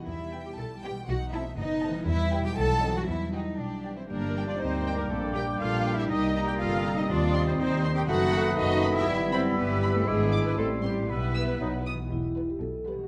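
A playful, whimsical film cue with a mischievous, quirky streak, moving at 120 BPM in a straight 2/4 and cut from a longer piece. It opens in E minor with concert harp arpeggios ringing in the background, while bowed strings fill in around them: a dark, woody violin section carries the distant melody, a rich violin section adds a second line, a clear viola section supplies lush accompaniment, and cello and double bass sections hold the bass, the basses focused and up front. A mellow, roomy French horn section sustains chords behind them. At 4.1 s the harmony shifts to G minor and the woodwinds join, with a clear clarinet, a clear oboe with a smooth top and a pure, soft-attacked small flute group each adding a second line, while a dark bassoon gives distant accompaniment. The chords wander through minor colours before turning back to E minor from 8.1 s, and at 12.1 s a dry, metallic vibraphone with soft mallets and slow motor vibrato steps forward with a brief melody. 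The recording sits in a moderate scoring-stage reverb and is captured with close, detailed microphones.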